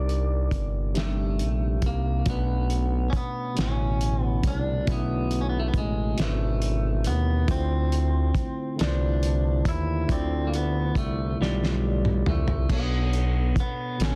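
Slow six-eight R&B with a yearning, late-night mood, this excerpt drifts over lush ninth chords, moving from Cm9 to Bm9, then Dm9 and back to Bm9. A clean, twangy electric guitar carries the melody with a picked, compressed, scooped tone, while a worn, slightly out-of-tune electric piano fills in the harmony as if heard through its own built-in speakers. Underneath, a smooth synth bass blending sawtooth and triangle waves sits up front with a fast attack and sustained notes. The cloth-damped drum kit sounds thuddy and lo-fi, like a small room, with muffled dark cymbals, a fat snare, a tight kick and a gritty, saturated edge. A drum fill arrives from 11.4 to 12.7 seconds before the return to Bm9. The mix is dry, dense and heavily limited in a modern way, keeping the whole groove close and intimate.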